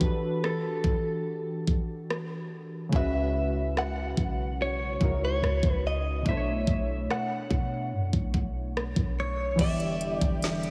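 A clean, direct-recorded electric guitar carries the melody up front, its picked, scooped and compressed tone colored by phaser and tape echo, over round, detuned analog keys treated with chorus and a filter sweep. A trap kit with a knocking kick, woody snare, crisp hats, rim clicks and crash sets a straight 4/4 feel, and a deep, boomy sine-tone 808 bass enters at 2.9 seconds as the harmony moves from Em11 through C#m11 and Bm11. Soaked in lush hall reverb, this longing, late-night contemporary R&B fragment adds a clear, tight brass section with light vibrato on soft-attack sustained Em7 chords at 9.6 seconds.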